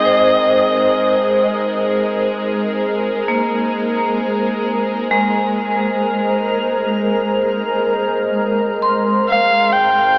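A serene ambient piece opens as a blurred, evolving granular cloud pad fades in on a single sustained chord, joined at once by a bright vibraphone arpeggio with medium hard mallets, a tense, string-like bowed drone, and a focused electric violin melody with vibrato that drops out at 1.9 seconds and returns at 9.3. Near the end, at 9.7 seconds, a muted, veiled double bass section enters far in the background on one low note. The whole is steeped in a huge, wet reverb and takes on the narrow colour of an AM radio, with diffuse ambient delay trailing both the violin and the vibraphone.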